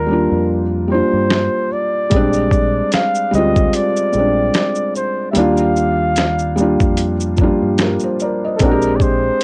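Lo-fi hip hop with a nostalgic, hazy mood and a swung 16th-note feel, this short cut from a longer piece moves between Ebmaj9 and Bb13 chords. A mellow flugelhorn sings the jazzy solo melody up front, with light vibrato and scooped notes softened by a low-pass filter, cassette tape and tape echo. A felt-muted upright piano with thick felt and audible action noise plays intimate accompaniment, over a round, punchy dub electric bass, and a gritty, overdriven sampler-style drum kit with a thumpy kick, snare, hi-hat and shaker arrives at 1.3 seconds, all in a lightly reverberant home cassette recording.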